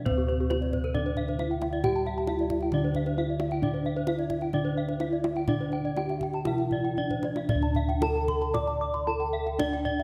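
A bronze metallophone carries the melody from C4-45c to D5, struck with padded disc mallets for a mellow, soft, mid-forward tone whose paired tuning throws off shimmering beats. This brilliant, shimmering Balinese gamelan passage in D slendro moves in a straight 4/4 between 114 and 134 BPM, cut from a longer piece. Bossed gongs anchor the bass with a round, beating bronze sound from padded beaters. A lower metallophone played with a horn mallet adds dark, smooth accompaniment until 7.5 seconds. Two more metallophones spin arpeggios above: one with a horn mallet and a vintage, band-limited character, the other with a wooden mallet, both ringing with paired tuning. The kendang sits tight and close, with a drum fill from 7.0 to 7.5 seconds leading into a new section, all carried in a moderate concert hall reverb.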